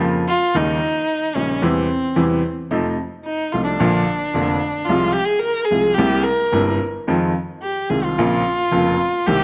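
The rhythm moves in a rubato 4/4 at around 110 BPM, giving this brief tango passage in F minor, tuned to A4 = 442 Hz, a loose, breathing pulse. The mood is sultry and melancholic. A clear, woody upright piano provides the accompaniment from the start, its long sustain and polished tone sitting up front across a range from F1 to G4. The violin enters at 0.3 seconds and carries the solo line as a second voice. It is a single bowed player with a soft attack, expressive vibrato and sliding portamento, heard close and up front between C4 and Bb4. The harmony passes from Bbm/F through Eb7, F7 and C7 before settling on Bbmadd9. The close, detailed miking and light reverb give the fragment an intimate, present sound, and it is cut from a longer piece.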